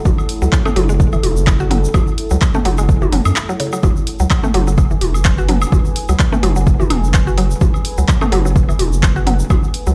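A dark, moody pad with chorus and its own reverb opens this clinical, quirky minimal techno excerpt in F# minor at 127 BPM. It is joined almost at once by a round, mellow analog bass pumping under the sidechain, an overdriven, punchy kick up front, a grainy egg shaker, and tape-echoed electronic toms and woodblock. A dry, overdriven analog drum machine adds handclaps and hi-hat, and a woody FM mallet pluck riff with phaser and cassette grit rides the swung groove over a single F#m7 chord, with a brief break at 3.4 seconds.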